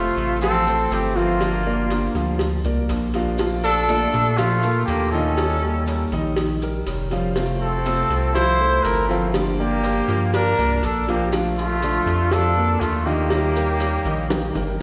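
Round, low-tuned cowbell and bongos tap out a straight, relaxed 4/4 at 121 BPM in the background of this sunny Cuban son and guajira passage in F major, alongside grainy, mellow maracas and a deep, thick, saturated sub bass placed up front. A veiled, bucket-muted trumpet carries the melody with vibrato above a second trumpet with light vibrato and scooped notes, both distant and roomy, while a dark grand piano with audible action noise plays arpeggios and a fingerpicked archtop guitar with finger squeak adds boxy accompaniment over Fmaj7, Gm7, Bbmaj7 and Eb7. A long, hall-like reverb surrounds the ensemble, and a drum fill closes the passage at 14.3 seconds.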